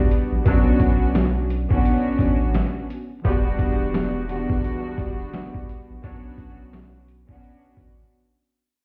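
Boom-bap hip-hop cut from a longer piece, moody and tough, with soft-attack bowed strings floating up front through a cassette-tape haze, gritty pitched-down sampler drums with a thumpy kick, a deep, round sine sub bass, and smooth-topped horn stabs with light vibrato and digital delay sitting in the background, the mix muffled as if heard through a wall with stone-room reverb and vinyl crackle as it fades out toward a brief break at 8.1 seconds.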